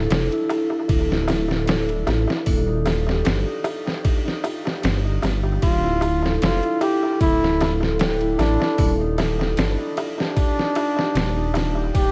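A brooding, cinematic trip hop excerpt at 76 BPM opens with bright, ringing, thumb-plucked concert harp arpeggios, roughened by vintage 12-bit sampler grit and analog delay, over an up-front, rumbling, detuned saw bass as the chords alternate between Dmadd9 and Ebmaj9. From 0.1 seconds, a compressed, pitched-down, muffled sampler-style kit with a thumpy kick, medium-tuned snare, hi-hat and ride settles into a lightly swung 16th-note feel, while a deep clay-shell darbuka with analog delay sits in the background. At 5.6 seconds, a veiled, bucket-muted trumpet takes a mellow solo with scooped notes and tape echo, all set in a small room with an echo-heavy mix and vinyl crackle.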